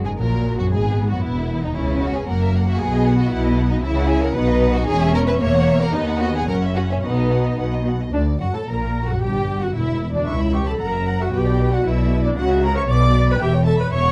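Spirited and graceful, this quick classical-period movement for string orchestra in 2/4 sets a melodic violin section and a second violin line over a smooth, distant viola accompaniment, a cello section with soft-attack portamento and an up-front, lush double bass section, all bowed with vibrato in a dark production with light reverb, turning from major to minor at 8.1 seconds.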